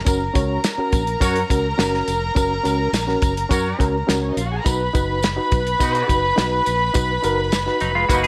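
Uptempo 1960s-style soul in F# major at 104 BPM, this short, joyful excerpt rides a straight 4/4 groove that moves from F# to B at 4.7 seconds. A punchy, up-front soul drum kit with a dry, medium-tuned snare and rolled-off top drives the beat alongside a round, dark fingered electric bass, while a jingly tambourine sits in the background. A reedy, worn electric piano, slightly out of tune and lightly overdriven with fast tremolo, fills in the chords through its built-in speakers. A dark, close string section bowed sul tasto with a soft attack and slapback echo carries a second line from the start, joined at 1.2 seconds by a clear, distant horn section with vibrato. In the final moments, from 7.8 seconds, a clean, compressed semi-hollow electric guitar steps up front with a riff, all set in light reverb and small room ambience.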